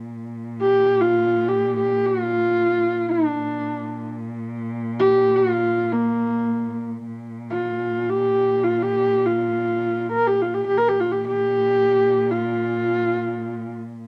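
In free time, this short cut from a longer Mongolian folk piece in a Bb gong mode feels vast and proud, as a dark, smooth-topped bowed cello holds a soft-attacked Bb2 drone from the start while a husky, woody horsehead fiddle carries the up-front melody between Bb3 and Bb4 from 0.6 seconds, both played with vibrato and portamento, heard through a small room's moderate reverb and the character of a home cassette recording.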